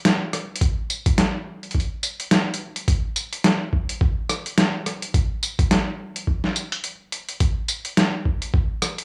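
A sampler-style boom bap drum kit opens this short cut at 0.1 s, its hi-hat, rim click, medium-tuned snare and tambourine sounding pitched down, compressed and gritty. An electronic kick drum enters at 0.6 s with a thumpy, tape-warm punch that sits up front in the mix, just like the kit. Both drum parts carry the character of being re-recorded in a small room. The groove is glitch hop in 4/4 with a loose 16th-note swing that gives it a swaggering, funky strut. A light studio reverb adds a touch of space around the beat, which runs until the kit stops at 9.0 s.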